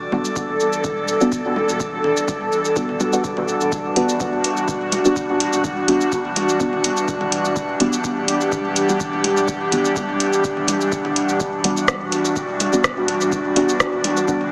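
An airy, breathy pad, a pure sine sub bass and a drifting glass-harmonics texture open this deep, cavernous dub techno excerpt together, soon joined by soft, dark chord stabs with phaser and dub echo, very quiet overdriven congas, a booming, up-front analog drum machine with metallic hi-hats, rim click and shaker, and a tape-flavoured electronic kick. The pad, bass, texture and stabs pump under sidechain, and everything sits on one sustained Em9 chord inside a huge ambient reverb with a heavily compressed, small-speaker radio sound.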